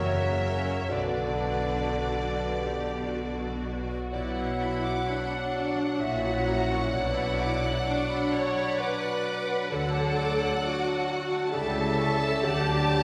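Classical orchestral music, lyrical and serene in a flexible rubato triple metre, cut from a longer piece, where a rich, focused violin section sings the melody over a background second violin line, bowed viola accompaniment, a mellow, distant bassoon, ringing harp arpeggios and a smooth cello and double bass foundation. At 4.1 seconds an airy, very quiet flute adds a second line, and from 4.2 seconds a vintage-toned French horn section holds sustained chords in the background. Lush vibrato strings bloom in a reverberant hall, with the harmony settling on B minor before moving to D major near the close.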